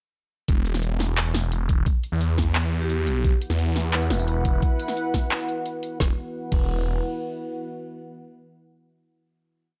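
At 0.5 s a tense, dark half-time drum and bass drop in E minor at 174 BPM hits at once, with an overdriven, knocking electronic kick and a sparse kit of woody snare, handclaps, tambourine, bright hi-hats and crash sitting up front beneath a swirling, thick phased saw bass of long gliding notes; a metallic, ringing vibraphone with analog delay sounds briefly in the background at 2.8 s, and a deep, moody analog pad with chorus, 12-bit sampler grit and sidechain pumping enters at 3.2 s and sustains the final chord after the beat stops, within a dry, gritty hardware recording.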